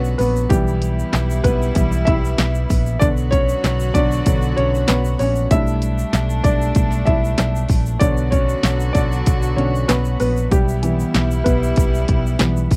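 A dry, close 1970s-style studio sound frames this driving, dramatic piano-driven pop excerpt, where a dark, mellow grand piano carries the lead over reedy, distant chamber strings holding sustained chords, a round, hollow-body picked electric bass, a grainy egg shaker in the background, and a punchy electronic house drum kit with handclaps and bright hats entering at 0.2 seconds, all cycling through chords over a B bass in B minor.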